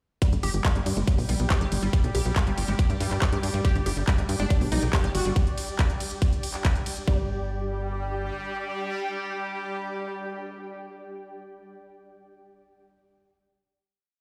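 A driving, intense psychedelic trance piece opens at 0.2 seconds straight into the drop, with an up-front, tight four-on-the-floor electronic kick and a tape-warm techno kit of handclaps, smooth closed and open hi-hats and ride laid over it. A punchy, rolling sixteenth-note sequencer bass of sawtooth, square wave and ring modulation drives the low end. In the background sits a dark, woody wave-folded pluck playing a sixteen-step acid line with accents, coloured by chorus, dub echo and sidechain pumping. A bubbling stepped-filter drone holds sustained chords under chorus and its own reverb, and a granular cloud pad drifts in at 1.8 seconds with blurred, slowly shifting chords. An airy, detuned supersaw stab joins at 3.6 seconds with a repeating riff, treated with phaser and dub echo. After the drums fall away at 7.1 seconds, the pad, stab and drone ring out on a final chord through a stone-room reverb while the bass carries on until 8.3 seconds.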